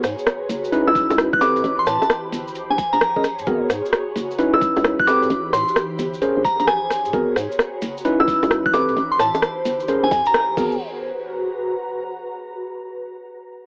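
Heard through a lo-fi cassette haze with an AM-radio tint and a small room's reverb, this bouncy, skippy two-step UK garage excerpt at 131 BPM swings its 16ths over a cycle of minor-ninth chords, with a hollow knocking FM bass, an overdriven garage drum kit of bongos, crash, metallic hats and rim clicks, a grainy cabasa in the background, an overdriven electronic kick entering at 1.0 s, worn, slightly out-of-tune tine electric piano stabs with tape echo, a glassy, crystalline synth bell melody up front, and an ethereal, airy pad that pumps with sidechain and phaser and carries on alone after 10.8 s.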